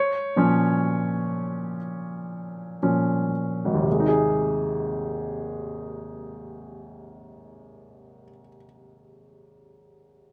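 A clear baby grand piano opens this short pop passage alone, playing in free time and slowing down over its first 3.9 seconds. The mood is heartfelt and hopeful, set in A-flat major with the tuning at A4 = 441 Hz. The piano serves as accompaniment, ranging from Ab1 up to Db5. A slapback echo gives its polished tone a doubling. The harmony rests on B-flat minor at the start, then settles onto A-flat at 3.9 seconds as a second section begins. The piano sits present and up front in a dry, open-air setting with little reverb, and the passage, cut from a longer piece, ends at 10.3 seconds.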